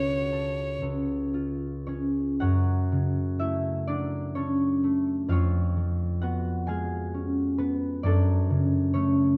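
A dark, woody solo violin sounds a brief vibrato C#5 over the concert harp at the opening of this melancholic, solemn romantic classical excerpt in a rubato 6/8. The violin falls away at 0.8 seconds, leaving the mellow, thumb-plucked harp to carry on alone until 9.4 seconds, its ringing strings reaching from C#2 to G#5 while the harmony moves from F# minor through C#7 and back. Both instruments sit up front in close, detailed microphones with light reverb.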